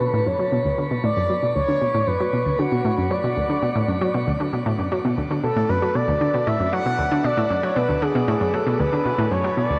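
From the opening moment, a round, nasal analog pluck riff with chorus and delay and a smooth, vibrato-tinged expressive synth lead carrying the melody through chorus, cassette tape and delay sound together over B minor, shaping a cosmic, mysterious ambient passage at 116 BPM in straight 4/4, its dark, warm production bathed in a long, wet shimmer reverb.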